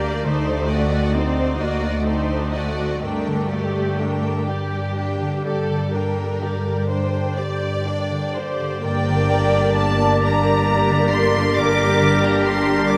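In a rubato 12/8 at a slow 40-46 BPM counted in dotted quarters, this melancholic, elegiac romantic orchestral movement in G minor moves from a D7b9 chord to G minor, with a smooth violin section carrying the melody above an expressive, lush second violin line, even violas, ringing fingerpicked harp arpeggios, background cellos and a close double bass section. At 8.8 s the winds and brass enter: a hollow, very quiet flute, a solo oboe with light vibrato and a bright, soft-attacked clarinet add second lines, while a dark, distant bassoon adds accompaniment and a mellow background French horn section sustains chords. The whole passage, cut from a longer piece, sits in the long, echoing wash of a vast cathedral reverb.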